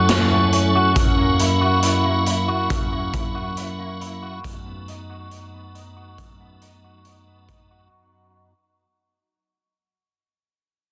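A piping tonewheel organ with chorus vibrato and key click holds sustained chords beside a dark, compressed electric guitar playing fingered, envelope-filtered arpeggios through ensemble chorus and digital delay, while a gritty, saturated garage drum kit with a boomy kick and medium-tuned snare joins at 0.1 seconds, all moving from F#m7 to F#7 and B7/F# in a hazy, melancholic dream pop fragment that fades out over its brief span in a small, lightly reverberant room.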